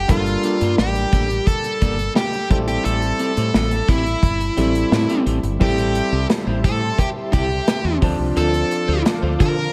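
A straight 4/4 groove from a tight-kicked studio drum kit, bathed in gated reverb, drives this dramatic, nostalgic 1980s-style pop excerpt, with a round, punchy fretless bass and an intimate concert grand piano, its action noise audible, filling out the Gmadd9, Am7 and Dm7 harmony. Up front, a dark, overdriven lead guitar with tape echo carries the melody, while a bright, twangy guitar at the edge of break-up picks a riff in the background through subtle chorus and tape echo. At 5.6 seconds a vintage sawtooth string machine with cellos adds mellow sustained chords through phaser and ensemble chorus, and a very quiet metallic cowbell joins, all within a light, small-room ambience.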